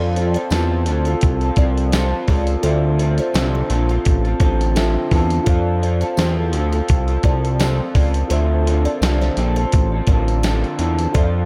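An 85 BPM groove in 4/4, lightly swung on the sixteenths, carries this hazy, dreamy bedroom-pop piece as it moves between F and Dm7. A sampler-style soul drum kit sits up front with a thumpy kick, fat snare and gritty, compressed character, re-recorded in a large room. Alongside it, a thick, saturated analog bass built from detuned sawtooth tones plucks and sustains, also up front. A twangy, slightly broken-up electric guitar through a small old amp plays accompaniment, smeared by lush chorus, warbly pitch drift and analog delay. Further back, a worn, reedy electric piano that is slightly out of tune sounds through its built-in speakers with cassette-tape colour and delay, while a woody, hollow kalimba enters at 0.4 seconds with a ringing second line treated with analog chorus and delay. A very quiet, jingly tambourine plays from 0.5 to 10.6 seconds, and the echo-heavy mix carries little reverb.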